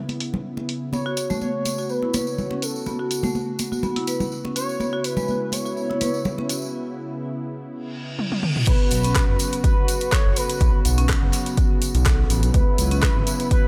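A detuned analog pad with a filter sweep opens this hypnotic, driving afro house excerpt alongside a low-pass-filtered deep house drum kit of handclaps, hi-hat, rim clicks, toms and crash, and soft-handed congas that stop at 6.5 seconds, while an expressive, vibrato-laden synth lead with lush chorus and tape echo, tape-echoed marimba arpeggios played with medium mallets and a jingly tambourine join in, until a break, an electronic reverse cymbal and a drum fill lead into the drop at 8.7 seconds, where a punchy, up-front electronic kick and a smooth, saturated synth bass enter beneath the sidechain-pumped pad and marimba.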